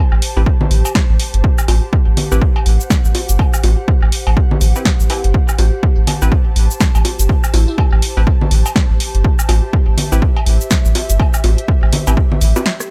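Set in a digital ambience, this quirky, sparse minimal techno excerpt moves with a swung shuffle and holds on a single minor-seventh chord. A punchy, tape-warm electronic kick sits up front beside a deep, thick saturated sub bass that pumps against it, while an analog drum machine adds hi-hat, rim click, shaker and snare. A layered set of woodblock, congas, cowbell and bongos, re-recorded in a small room, fills in the groove. Crisp, warbling wavetable chord stabs with a detuned, wave-folded vintage edge snap out in short plucks through delay, and an ethereal, airy pad drifts far beneath with slow attack, ensemble chorus and its own reverb, pumping with the kick. Only between 5.6 and 7.7 seconds does a glassy, crystalline wavetable pluck appear in the background, shimmering through chorus, phaser and delay, before a break at 12.7 seconds cuts the passage off.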